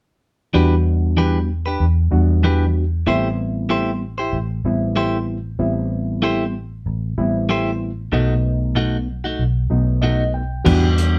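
Soulful and mournful, this straight-eighth soul blues excerpt pairs a barky, overdriven reed electric piano with phaser, a clean, compressed electric guitar playing stabs and a round, foam-muted vintage bass over Em7, Am7 and B7 in a live room, with the piano taking a fill at 9.7 seconds before a gritty, dark-cymballed drum kit with punchy kick enters at 10.7 seconds.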